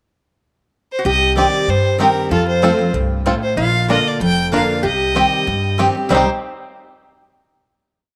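A clear, smooth fiddle with light vibrato carries the song-like motif melody up front from 0.9 seconds in this short, haunting and rustic bluegrass piece in C dorian at a brisk 190 BPM, moving through Cm, F and Bb before settling on a final chord at 6.1 seconds. Beneath it, a nasal, metallic lap resonator guitar played with slide and fingerpicks traces a long guide-tone line, while a bright, full-bodied dreadnought guitar alternates bass notes and strums with bass runs, and a woody pizzicato upright bass plays a two-beat root-and-fifth pattern. A twangy, percussive banjo adds three-finger rolls and off-beat vamping, and a round mandolin chops on the off-beats in the background, all set in a small room with moderate spring reverb.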